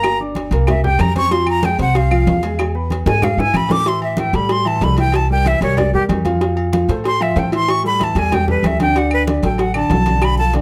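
Afro-Cuban jazz at a driving, sultry 188 BPM in 4/4, cut from a longer piece, in which a breathy, bright, tongued and unsteady concert flute solos up front with plate reverb over smooth vintage grand piano and a thumpy, woody pizzicato upright bass, while ringing low-tuned congas, tight high-tuned cowbell and bongos, metal-shell agogo bells and timbales, and dry claves (heard until 3.7 s and again from 9.1 s) fill out the percussion, with a drum fill at 3.1 s leading into A minor at 3.9 s.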